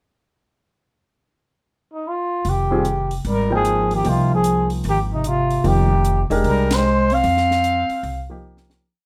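A breathy, whispered trumpet leads this short modal jazz piece, entering at 1.9 seconds with a dark, scooped, vibrato-tinged motif built from call phrases, sounding distant and roomy yet up front and intimate. The mood is cool and hypnotic, swinging in 4/4 at 150 BPM in F dorian, and after a brief pickup the band settles onto a single Fm9 chord. Woody, thumpy gut-string upright bass plays a pizzicato two-feel line, while a compact cocktail drum kit, dry with dark cymbals and a high-tuned snare, keeps time on the hi-hat with sticks and sits low in the mix. A bass clarinet adds a close-miked harmony line with light vibrato, moving mostly in thirds beneath the trumpet, and a grand piano comps in syncopated quartal voicings with short sustain. Light reverb surrounds the group; a band accent lands at 6.6 seconds, and the music fades from 7.2 seconds as a drum fill closes it out.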